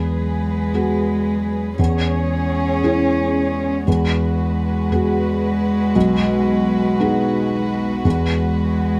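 Intimate and tender, this short neoclassical fragment in a rubato 6/8 places a felt-muted upright piano up front, its thick, mellow tone carrying audible action noise, alongside a dark, close solo cello bowed sul tasto with a soft attack and vibrato as a second line, while a chamber string section holds warm sustained chords with light vibrato in a light reverb as the harmony moves from Eadd9 to C#m/E, back to Eadd9, then through B6 home to Eadd9.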